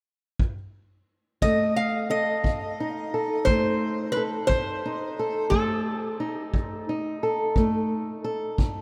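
A slow, straight 12/8 pulse at 59 BPM opens with a punchy, brushed kick drum with a rolled-off top at 0.4 s, and at 1.4 s this swaggering, gritty acoustic country blues excerpt in F mixolydian settles on an F7 chord as a metallic, nasal lap resonator guitar played with fingerpicks and slide carries the melody up front over a dark, boxy, fingerpicked old ladder-braced acoustic guitar, all within a vast, echoing cathedral reverb.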